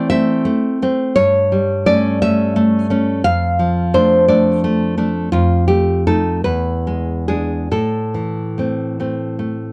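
A solo nylon-string guitar carries this short excerpt of a romantic classical guitar piece, fingerpicked with a deep classical tone and sitting up front in a dry, close studio sound with a 1970s character and light reverb. The mood is melancholic and passionate, moving in a slow, rubato 6/8 at roughly 46-59 BPM counted in dotted quarters. Set in A minor, the guitar spans from E2 up to F5. The harmony travels from Am through A7/G, Dm/F and F7 before reaching E7 at 6.4 seconds and settling back on Am at 7.7 seconds. The whole passage, lasting 9.7 seconds, is cut from a longer work and plays as a single section.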